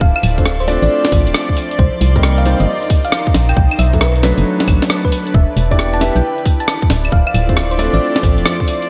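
UK garage in a two-step style, this moody, bouncy excerpt from a longer piece moves at 135 BPM with a swung 4/4 feel, cycling through Dm7, Cm7, Bm7 and Em7 chords. A hollow, organ-like FM bass sits up front beside a tight electronic kick, while a gritty, pitched-up sampler-style kit of claves, hi-hat, rim click and snare joins at 0.2 seconds, and a dark concert grand piano adds stabs from 0.4 seconds through a diffuse delay. Above them, a round, tine-like synth pluck carries the melody with chorus and delay, a breathy pad and a cloudy granular pad pump with sidechain compression, and a lush hall reverb soaks the dreamy, softened mix.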